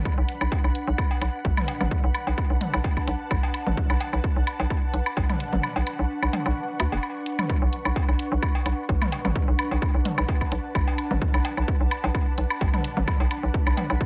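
Minimal techno at 129 BPM in B minor, hypnotic and clinical, where a punchy, overdriven kick and up-front hi-hat drive a swung groove over a hollow, bouncy FM bass that pumps with the sidechain, while overdriven woodblock, cowbell and toms run through tape echo, an ethereal, detuned pad with ensemble chorus hovers on a Bm7 chord, and the kick drops out from 5.6 to 7.5 seconds in this echo-heavy excerpt.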